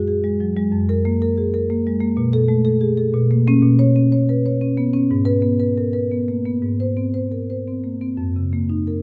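A solo marimba played with medium mallets, warm and up front, opens this reflective, hypnotic contemporary classical fragment in a rubato 3/4 around 114-126 BPM, tuned to A4 = 435 Hz, moving through suspended and add9 harmonies from F#sus2 to a closing F#6 across its range of F#2 to C#5, captured by close, detailed microphones within a moderate recital hall reverb.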